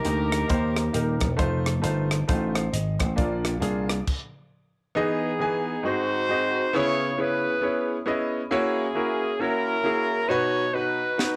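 A small room's light reverb lends this short, polished cut from a longer uptempo gospel piece an intimate, close feel. It moves at 135 BPM in 4/4 with a swung eighth-note lilt, and its mood is both reverent and jubilant. A clear concert grand piano accompanies throughout, with deep bass and audible action noise. An airy fusion kit with a high-tuned snare and punchy kick drives the opening alongside a round, amped vintage slap bass, while the horn section offers a brief opening phrase. The band stops at 4.1 seconds as bass and drums fall away and the piano carries on. At 5.0 seconds the music lands in E major as the horns, warm with light vibrato, take up the melody over the piano, before a quick drum fill at 11.2 seconds closes the excerpt.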